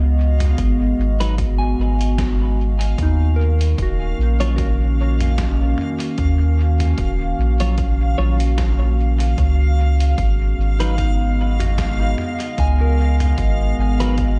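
A round, up-front dub sub bass anchors this deep, hazy ambient dub excerpt at 75 BPM with a swung 16th-note feel, beneath a warbling, detuned tape-like pad holding Db9sus4 and Ebm9 chords, pure FM bell arpeggios drifting through chorus and delay, and a bright reversed granular texture, while a muffled lo-fi sampler kit of hi-hat, snare and toms with dub echo enters at 0.4 seconds, a punchy overdriven electronic kick follows in the background at 0.6 seconds, and clean picked electric guitar stabs with analog chorus and dub echo join at 1.2 seconds, the whole mix sitting in a light reverb.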